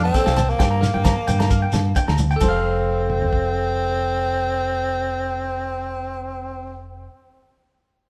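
Captured live by a band in one room with wet studio reverb, this sunny, danceable highlife excerpt features a raspy, growling tenor saxophone up front, carrying the melody through an analog delay until 6.8 seconds, over twangy, compressed electric guitar arpeggios and a round, deep fingered bass, while a boxy swing-style acoustic guitar, a tight, dry 70s drum kit with dark cymbals, a grainy shekere, ringing agogo bells and very quiet, thin-skinned congas add accompaniment and percussion during the opening seconds, with the drums continuing until 3.4 seconds.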